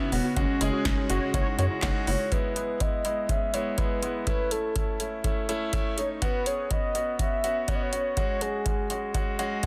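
Upbeat, nostalgic synth-pop in 4/4 at 123 BPM, cut from a longer piece, where a horn-like synth lead with chorus, delay and vibrato carries the melody over clear, up-front baby grand piano and an analog drum machine with deep kick, punchy snare, metallic hats and handclaps, while a rubbery square bass, lush string-machine chords, a soft detuned pluck arpeggio and a dark background synth-brass line fill the opening until about 2.3 seconds, when the harmony moves through E, A and Bsus2 before returning to F#sus2 in a dense, heavily limited mix with light reverb.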